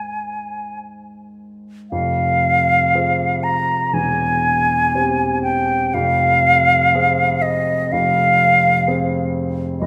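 A moderate scoring-stage reverb surrounds this tender, warm romantic classical fragment in F minor, where a pure concert flute with vibrato and a soft attack sings an expressive melody up front between Eb5 and Bb5, while a dark, mellow baby grand piano with long sustain accompanies from C1 to Eb5, moving slowly at 50-64 BPM in rubato 4/4 through Ab, Fm, C/E and back to Fm across its 9.9 seconds.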